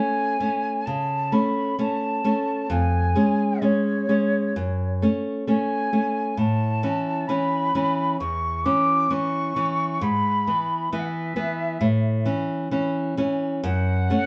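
A romantic duo for flute and classical guitar in F# minor, this serene, tender excerpt moves at a rubato 66 BPM in 4/4, cut from a longer piece. The nylon-string guitar sits up front with a bright, fresh-stringed fingerpicked accompaniment, while the silver concert flute sings the melody from further back, airy and mellow with vibrato and tongued notes. A wet studio reverb places the pair at a distance in the room as the harmony passes from F# minor through A and E before returning home.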